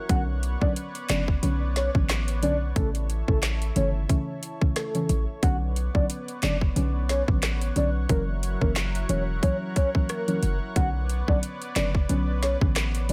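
A lightly swung dancehall groove from an overdriven, up-front electronic kit of tight kick, woody snare, metallic hats, rim click and handclaps drives this sultry, hypnotic excerpt, with a punchy, heavy 808-style bass beneath a dark, round pluck and a lush, warbling pad that both pump with sidechain, while a full octave-layered synth lead carries the melody through chorus, tremolo and digital delay over a Bmadd9, A and F#7 progression set in a digital ambience.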